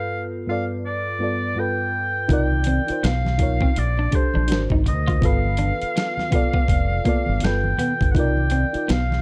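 A distant, roomy oboe with light vibrato opens this short excerpt of smooth, introspective neo-soul R&B, singing a classical-style solo line over a mellow FM electric piano whose soft, warbling vintage tone carries chorus and a noise layer. At 2.3 seconds the groove arrives at 82 BPM in 4/4 with a 60% swing on the sixteenths: a compressed, pitched-down boom bap sampler-style kit with a thumpy kick and medium-tuned snare sits up front beside a deep, round, punchy dub bass, while low-tuned congas played with soft hands sit very quietly in the background. An electric guitar at the edge of break-up joins at 2.7 seconds as a second line, its bright, twangy, scooped tone colored by a warbly pitch drift. The harmony moves through lush extended chords such as G9, Cm7, Bbmaj9 and Ab9 before circling back to G7 and Cm7. Digital ambience wraps the whole in a dark production, with the drums adding tape-kissed grit.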